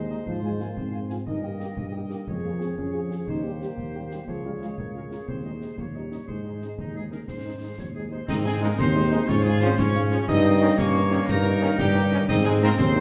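A spirited, festive military-style march for wind band in 6/8 at 120 BPM in Ab major, cut from a longer piece, with a trumpet section of light vibrato and soft attack carrying the melody over a mellow tuba bass placed up front, a smooth-topped euphonium and a clear, distant woodwind section on second lines, and a roomy French horn section in the background. Concert bass drum, snare and dark clash cymbals sound close and dry, while a wooden, crisp-attacked piccolo joins on a second line at 8.3 seconds and a very quiet, bright trombone section adds sustained chords from 8.6 seconds. A wet recital-hall reverb surrounds the band.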